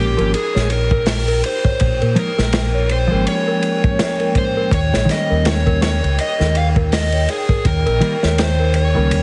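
Cinematic and melancholic, this swung trip hop excerpt sets a gritty overdriven slide guitar melody with tape echo over a mellow electric guitar's harmonic tremolo, delicate celesta arpeggios, a round, up-front dub bass, crunchy breakbeat drums entering at 0.2 seconds and a deep, dark ambient pad arriving at 0.8 seconds, moving from Bbm7 to Eb7 through a heavily compressed, radio-like sound with vinyl crackle and small room ambience.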